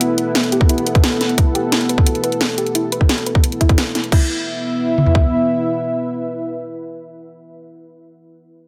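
A dense, heavily limited and dry-sounding cut from a longer dark, aggressive technical drum and bass piece at 175 BPM, where an up-front, detuned sawtooth analog pad holds moody sustained chords with sidechain pumping, a soft round pluck with chorus and delay traces arpeggios in the background until 4.3 s, an overdriven drum kit layer brings a cracking snare, bright hats and crash until 4.2 s, a separate up-front layer adds a tight kick and toms from 0.6 s to 5.2 s, and a mellow, wave-folded ambient pad with ring modulation and built-in reverb fades out beneath it all.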